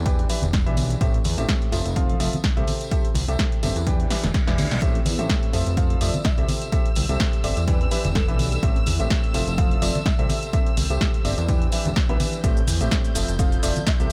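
A punchy electronic kick up front drives this bittersweet, energetic piano house excerpt at 126 BPM in A minor with a light swing, joined by a punchy analog drum machine with cabasa, hi-hat and snare, background tambourine and congas, a fat, detuned, tube-saturated bass with sidechain pumping, a clear, worn grand piano riff with delay cycling through Em7, Am7, Fmaj7 and C6, a faint, cloudy granular pad, a reverse cymbal and drum fill at 4.1 seconds that usher in a distant, woody violin section, and a round, tine-like synth pluck with chorus that takes up the melody from 6.0 seconds.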